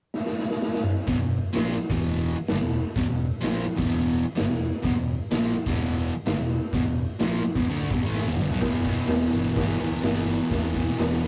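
A straight 127 BPM garage rock stomp in E minor opens with a raw, punchy drum fill on kick, snare, toms, hi-hat and crash, then at 1.1 seconds a double-tracked, fuzz-soaked guitar riff and a bright, punchy picked bass with overdrive kick in over an E5 chord, shifting to Em after another fill near 8.1 seconds, all captured with gritty, swaggering energy in a rough rehearsal room with light reverb.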